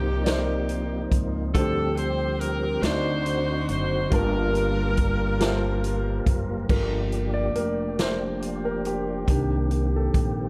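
This solemn, soulful slow gospel passage in a straight 6/8 opens with a forceful, edgy alto saxophone carrying the melody, scooping into its notes over a punchy, close-miked saxophone section that shades the tune with vibrato. Beneath them a concert grand piano with a deep bass register plays the accompaniment, a tonewheel organ holds sustained chords through a slow rotary speaker with light overdrive, chorus vibrato and audible key click, and a woody pizzicato upright bass sits up front. A swinging big-band drum kit joins at 0.3 seconds with a punchy kick, medium-tuned snare, hi-hat and crash cymbal in a natural studio-room sound. The saxophones drop out near 6.3 seconds, and from 6.7 seconds the piano takes a solo while a very quiet, mellow French horn section adds tight sustained chords with light vibrato. The harmony moves through rich minor ninth and suspended dominant chords, all set in a dark, warm production with light reverb, in a passage cut from a longer piece.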